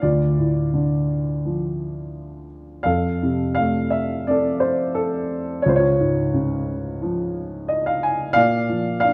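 A dark, mellow and boxy grand piano sits up front in this short, sunny and hopeful excerpt of lyrical solo classical piano, moving in a rubato 4/4 at about 87 BPM through D minor, F, D-flat and B-flat chords, spanning Db2 to Ab5, with a brief fill from 7.3 to 8.3 seconds, all set in a moderate recital-hall reverb with a dark production.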